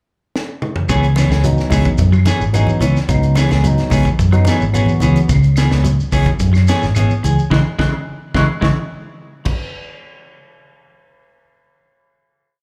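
A round, up-front fingered electric bass drives this defiant, intense afrobeat piece at 108 BPM in 4/4, playing a syncopated riff over a single C#m7 chord. It enters at 0.9 s after a drum fill from the tight funk kit, whose high-tuned snare, tight kick and dark cymbals carry an afro groove in a small, natural-sounding room. A semi-hollow electric guitar picks a clean arpeggiated ostinato with tremolo and slapback echo, while a second clean electric guitar strums upper chord shapes as rhythmic stabs, and a barky, lightly overdriven electric piano adds quartal chord stabs through a combo amp. Woody claves mark a five-stroke time line from the distant background, a grainy shekere shakes alongside, and very quiet congas with hard hands sound close and dry. The band hits an accent from 7.5 s, and the piece ends on a final hit at 9.7 s, heard as a live club gig through the venue's PA with light reverb.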